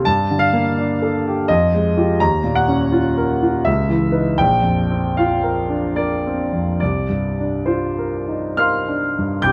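A clear, up-front concert grand piano carries this short impressionist solo piece, cut from a longer work, its deep bass and open tone spanning Bb1 to G6 under a light reverb. Moving in a rubato 3/4 between 64 and 85 BPM in C dorian, the music feels nocturnal and mysterious as it drifts through rich ninth chords (Gm9, Fm9, Ebm9, Dbm9) before settling on Cm11 at 6.8 seconds.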